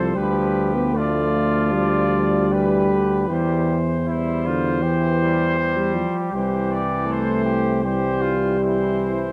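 This classical, hymn-like excerpt for brass band unfolds at a rubato 78 BPM in C major, tender in mood as it moves from G7/D to C/E and settles on C by 6.3 seconds. A mellow, vintage-toned trumpet section carries the melody while a clear flugelhorn with light vibrato sings a second line beneath it, and a dark euphonium and a distant, brilliant trombone in the background fill out the accompaniment. Up front, a smooth-topped tuba anchors the bass, all captured with close, detailed microphones and a light touch of reverb across the full 9.3 seconds.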